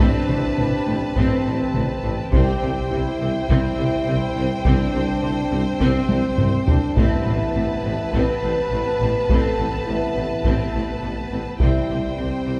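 Heroic and dark, this epic orchestral film-score excerpt sets a distant, vibrato-laden violin melody over a rich second violin line, a background viola part, and mellow French horns with trombones holding sustained chords, while cellos, double basses and a roomy tuba anchor the bass beneath heavy-stick taiko drums that sound close and dry and break into a fill at 6.1 seconds, all within a long church reverb.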